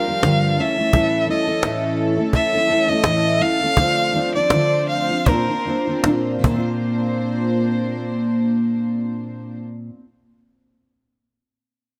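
A close studio sound with light reverb frames this sunny, easy-going acoustic pop excerpt, its gently swung feel slowing through the opening section as the harmony moves from Gm7 toward Bbadd9. Up front, a solo bowed violin with vibrato and a smooth, focused top carries the melody until 6.0 seconds. Beneath it, a double-tracked, full-bodied jumbo steel-string guitar with fresh strings is fingerpicked, and a soft-attack string section sustains pure, floating sul tasto chords. A woody, dry cajon with faint snares sits close until 6.6 seconds, leaving guitar and strings to carry the closing moments before the guitar finishes alone.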